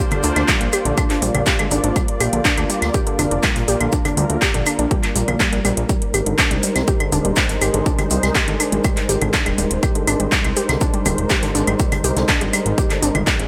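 Melodic techno at 122 BPM in a straight 4/4, this 13.5-second excerpt feels dramatic and hypnotic, moving from Bbadd9 to Abadd9 at 5.9 seconds. A sweeping, resonant pad holds sustained chords with a slow attack and long release, its bright, airy sawtooth tone evolving under a filter swell, chorus and sidechain pumping. A warbly, dusty pluck plays arpeggios in a lo-fi, mellow blend of square and sawtooth waves with a noise layer and filter sweep, treated with chorus, tape echo and sidechain pumping. A house kit of claves, congas, handclaps and metallic hats enters at 0.1 seconds, pumping with the sidechain, and a fat, thick analog bass with a detuned sawtooth edge pumps up front from 0.2 seconds. The punchy, tape-tinged electronic kick arrives at 0.5 seconds. Beneath them, a very quiet acoustic jazz kit adds hi-hat, shaker and a medium-tuned snare from a small room, all within light reverb and studio ambience.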